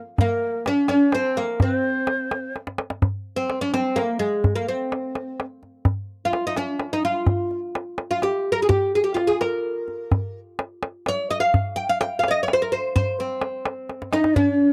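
A bright, woody oud with plectrum-plucked double strings carries the melody up front in this melancholic, soulful Persian modal ensemble piece in C dastgah shur, moving at 85 BPM in a straight 6/8. A breathy, end-blown ney with vibrato and a crisp attack adds a second line only until 2.5 seconds and again from 14.1 seconds. A warm tombak played with soft hands sits close and keeps time, adding drum fills at 2.5 and 13.9 seconds, all in a dry, close 1970s-style studio sound cut from a longer performance.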